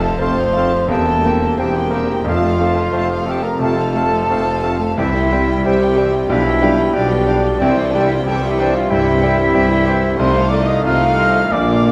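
A clear grand piano carries the melody in this lush, lyrical classical passage, its key action faintly audible beneath the notes, while a dark studio violin section shares the tune high above with light vibrato and a soft, sul tasto touch. The time flexes freely with rubato, and the harmony moves among F, C and G-based chords, closing on F7/C. A silver concert flute, expressive and distant, plays a second line, joined by a mellow clarinet, a cor anglais and a very quiet symphonic violin section with a floating tone. A dusky trumpet adds stabs, French horns and a trombone section hold sustained chords, and a woody viola section and a close-miked bassoon fill in the accompaniment. Tuba, a rich cello section and double basses anchor the bass, and hard-mallet timpani sound very quietly until 8.6 seconds, all set in the wet bloom of a scoring stage reverb.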